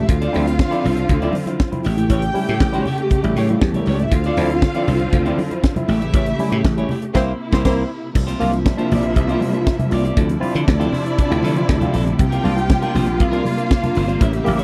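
A dry, thumbed slap bass sits up front, bright, growly and punchy, driving this sultry, glamorous disco groove at 119 BPM in D minor, cut from a longer piece. A tight funk drum kit with a high-tuned snare, hi-hat, crash cymbal and tight kick shares the foreground, while very quiet congas with soft hands add a thick-skinned pulse from 0.3 seconds. A lush studio string section holds sustained chords with vibrato and portamento, and a second bowed string ensemble carries a smooth-topped line above it. A clean, picked semi-hollow electric guitar fills out the accompaniment alongside a barky tine electric piano, lightly overdriven and treated with phaser, which sits in the background. The chords move between Dm7 and A7 before the band hits an accent on C7 at 7.1 seconds, opening into a passage built on C7sus4 and Dm9, all captured in a close, dry 1970s-style studio sound.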